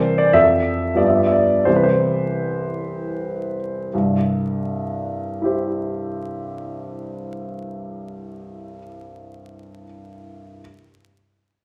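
Hopeful and lyrical, this romantic classical character piece for solo grand piano unfolds in a rubato 3/4 at 75-102 BPM in C major, its warm, present, up-front tone ringing with long sustain from C2 to E5 through an F, G7, C progression that slows over the first 3.9 seconds before a new section arrives, heard within a wet recital hall reverb and a layer of vinyl crackle as a passage cut from a longer work.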